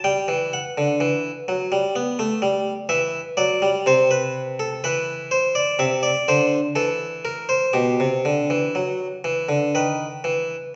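In a straight 4/4 pulse at 62 BPM, this solemn yet driving baroque-style two-part invention for solo harpsichord unfolds in E minor, its bright, plucked Flemish-style tone from a single set of strings sitting up front and mid-forward across a range of B2 to G5, moving from Em through Bm, Am/C and C7 to Em/B and B/D#, while a wet recital hall reverb and a distant, softened vantage frame this brief passage taken from a longer piece.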